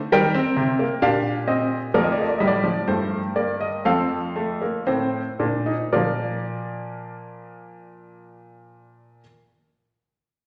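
A worn, intimate baby grand sits up front in a wet recital hall, its short sustain carried by the room's reverb and its action noise clearly audible. This is a joyful, elegant classical piece written as a baroque-style four-part fugue in 4/4 with a straight feel, cut from a longer work. The solo piano spans F2 to G5 and plays from the start until 9.2 seconds. The opening passage slows down through its first 5.9 seconds, moving from Cm7 to F7sus4 and then F7. At 5.9 seconds it arrives on Bb as a new section begins. The natural, warm tone of the instrument gives the counterpoint a close, personal character.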